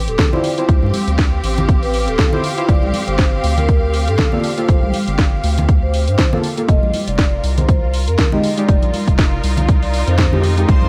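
Deep house at 120 BPM with a late-night, smooth mood, cut from a longer piece, where a punchy overdriven kick with 12-bit grit drives a round, dark analog bass and lush symphonic strings that both pump with the sidechain, while cracking snare and bright hats, bright thin-skinned congas, detuned chorused chord stabs over Dm7, Gm7 and Fm7, and a mellow soft-mallet vibraphone melody trailing tape echo fill a small room dusted with vinyl crackle, and a clear, biting violin section slips in only at 10.7 seconds.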